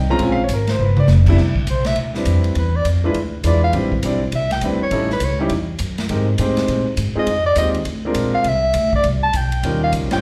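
Playful and warm, this snippet of small-group swing and bop at 204 BPM catches a live club gig through the venue's PA, where the woody pizzicato upright bass and an intimate, vintage grand piano with audible action noise and slapback echo set the harmony, a big-band drum kit with dark cymbals and a punchy kick adds a fill at 0.8 seconds, and a smooth-topped soprano saxophone, also carrying slapback echo, takes an up-front solo from 1.7 seconds over shifting ninth and eleventh chords.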